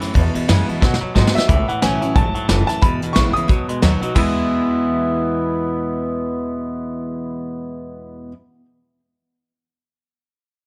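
An intimate upright piano with audible action noise carries the melody through an analog delay from 1.4 s in this upbeat, rollicking swung rockabilly excerpt, over an up-front picked dreadnought acoustic guitar, a clean, compressed twangy electric guitar riff and a woody, thumpy pizzicato upright bass, while a soft brush drum kit with a punchy kick adds an early fill and then drops out at 4.2 s, all set in a small room.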